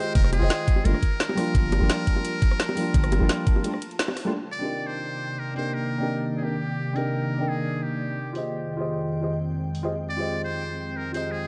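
Dark, softly reverberant small-room production frames this lush, soulful liquid drum and bass passage at 172 BPM in C minor, where a buzzy, metal-muted trumpet carries a jazz-style melody over a thick-felted upright piano with delay and a glassy FM pad with chorus, while a deep sine 808 bass, an overdriven knocking kick, a drum kit with a woody snare and bright hats, and tight high-tuned bongos drive the drop until a break at 3.6 seconds, after which the kit continues under a filter sweep from 4.3 seconds.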